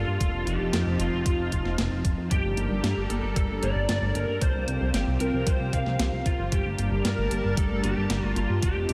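Driving and nocturnal, this synthwave excerpt in G minor moves at 114 BPM in a straight 4/4. An overdriven, lo-fi lead guitar carries the melody through chorus, analog delay and shimmer reverb over a lush, warbling detuned pad and a glossy, up-front synth bass, both pumping to the sidechain. A thumpy overdriven kick and a sampler-style snare and hi-hat join at 0.2 seconds, a dark, round pluck adds arpeggios from 2.3 seconds through tape echo, and the chords run F7, Gmadd9, Csus4 and back to Gmadd9 in a dreamy mix soaked in cathedral reverb.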